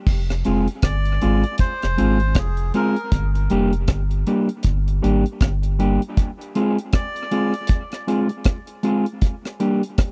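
A swung, unhurried dub reggae groove rides on a dry, up-front acoustic drum kit with a tight kick, rim clicks, hi-hat and crash cymbal, while a round, deep sub bass holds the low end until it drops out at 6.0 s. A dark, clean, fingered electric guitar filtered through a high-pass filter and dub echo carries the accompaniment over chords moving between Fm and Gm. A quieter, reedy and breathy melodica sings the melody through its own dub echo, giving this close, heavy and meditative studio cut from a longer piece a nasal, airy edge.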